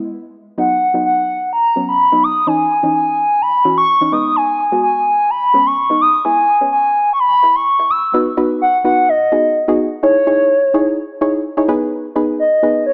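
A hollow, woody clarinet-like synth lead with vibrato, chorus and tape echo carries the melody over a soft, round, dark pluck with chorus in this bittersweet yet confident 127 BPM pop excerpt, where a build-up from 0.6 seconds gives way to a drop at 8.1 seconds, moving through B, C#madd9, G#m and E with light reverb and a filtered, small-speaker sound.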